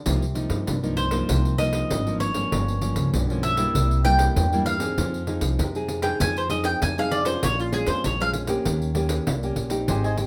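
Set in a moderate studio reverb, this short cut of yearning, lively samba and choro in C minor moves at 98 BPM, with a bright, picked bowl-back mandolin up front carrying the melody from 1.0 to 8.3 s over full-bodied, fingerpicked nylon-string guitar with audible finger squeak, woody pizzicato upright bass and a jingly pandeiro, before a crisp cavaquinho slips in at 9.9 s.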